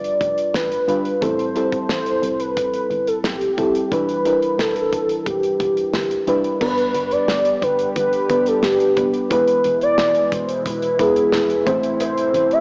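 Dramatic and moody, this 1980s-style pop excerpt moves at 89 BPM in 4/4, with a velvety, chorused synth lead singing the melody up front over a soft, warbling FM electric piano and a round, dark FM bass in the background, while a studio drum kit with a punchy kick and rolled-off top keeps time, a swirling, phased analog pad enters at 7.2 seconds, and a very quiet, metallic cowbell sounds briefly at 12.0 seconds, all bathed in a lush hall reverb and a lo-fi cassette, small-speaker character.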